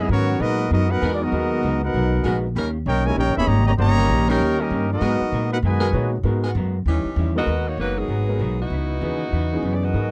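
Brassy and sultry, this big band swing passage moves at 195 BPM in G# minor with a swing feel, as a smooth-topped trumpet section carries the melody over a veiled, bucket-muted trombone second line in the background and sustained chords from a clear saxophone section. At 7.4 seconds the saxophones take the melody with light vibrato, while a woody, dark pizzicato upright bass stays up front throughout. A very quiet, clean hollow-body electric guitar and an intimate grand piano with audible action noise, entering at 1.0 seconds, fill out the accompaniment in a dry, close 1970s-style studio sound.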